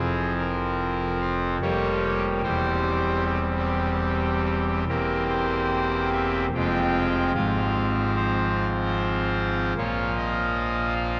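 Heard through worn, warbling old cassette tape with its pitch drifting, and set in a wet cathedral reverb that lingers for about 6.2 seconds, this grave, solemn classical chorale for solo pipe organ on a bright, brassy trumpet stop with baroque voicing and audible chiff sits up front at a rubato 74 BPM in 3/4, moving through F minor harmonies across a range from E1 to G5 over 11.2 seconds cut from a longer piece.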